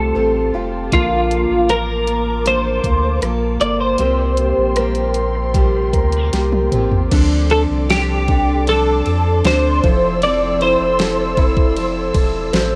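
A clean, compressed twelve-string electric guitar with ensemble chorus carries the melody up front, over an intimate grand piano with audible action noise, a veiled con sordino string section holding lush chords in the distance, a bright picked acoustic guitar arpeggiating with analog delay in the background, and a round, mellow sine sub bass. From 0.9 seconds a produced, layered pop drum kit joins with a knocking kick and deep snare, playing a fill into the second section at 7.1 seconds, and the piano adds its own fill at 12.1 seconds to close this tender, hopeful pop ballad excerpt. A cassette tape colour runs through every part except the bass, and light reverb gives the whole a homespun, home-recorded feel.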